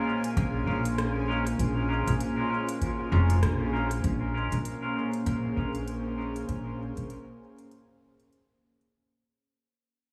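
A swung sixteenth-note feel at 98 BPM in 4/4 carries this hazy, meditative ambient dub excerpt in Bb minor, resting on a Bbm7 chord. An airy, breathy pad with a detuned, chorused sheen sits up front holding sustained chords, while a clean, twangy electric guitar adds bright picked stabs dressed in lush chorus and dub echo until 6.3 seconds. Deep in the background, a bubbling stepped-filter texture with resonant, random filter steps shimmers through chorus and its own reverb. A woody pizzicato upright bass leads the low end from 0.4 seconds, joined by a deep analog electronic kick, and an overdriven electronic kit supplies crisp hi-hats and rim clicks through dub echo. The echo-heavy mix sits in a small room with light reverb, and after a band accent around 3.4 seconds the piece begins a long fade from 4.0 seconds.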